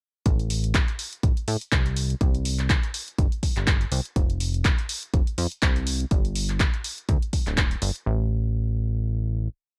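Energetic and soulful, this short piano house piece rides a swung groove from 0.3 seconds, built on a punchy four-on-the-floor electronic kick with a layered, tape-warm thump and a dry analog drum machine supplying the handclap backbeat and open and closed hi-hats. A funky, plucky analog bass blends sawtooth and square tones into a syncopated riff with a fast-attack filter pluck and sidechain pumping, and it carries on alone into the final note, which closes the piece at 9.8 seconds. Every part sits up front in a digital ambience, and the recording has a gritty hardware character.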